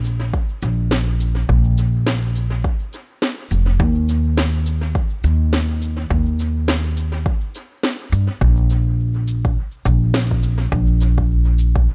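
A dark, thumpy pizzicato upright bass with steel strings sits up front, moving between F1 and G2 through this spacious, hazy ambient dub passage at 104 BPM in 4/4, with a 16th-note swing and tuning at A4 = 441 Hz. An electronic cabasa and woody snare, overdriven and thrown into dub echo, is joined at 0.3 s by a deep, layered electronic kick, overdriven and re-recorded in a small room. A digital ambience hangs over the groove as it moves from its opening section into a second one at 8.4 s, cut from a longer piece.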